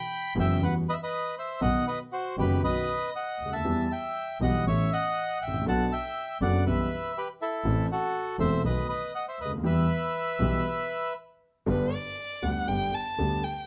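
Tango in E harmonic minor, sultry and dramatic at a rubato 119 BPM, with a reedy, vintage bandoneon carrying the melody up front over an intimate concert grand piano whose action noise and deep bass are audible, a clear, focused bowed double bass with vibrato, and light reverb, pausing at a stop at 10.6 s before a close, warm violin takes an expressive solo at 11.7 s with soft attacks, vibrato and portamento.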